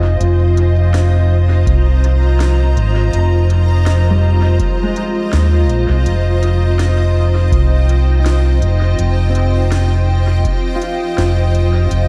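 Spacious and deep, this ambient dub passage sits at 82 BPM in F minor on a single Fm7 chord, with a cloudy, blurred granular pad holding sustained chords over a dark, round fingered electric bass that stands up front. A thumb-plucked Celtic harp rings out arpeggios in the background through a low-pass filter sweep and analog delay, while a distant electronic kit with a woody snare and smooth hi-hats drifts in dub echo from 0.2 seconds, joined by a deep, tape-warm electronic kick from 1.7 to 10.6 seconds. Vinyl crackle and light reverb coat the whole, and the excerpt is cut from a longer piece.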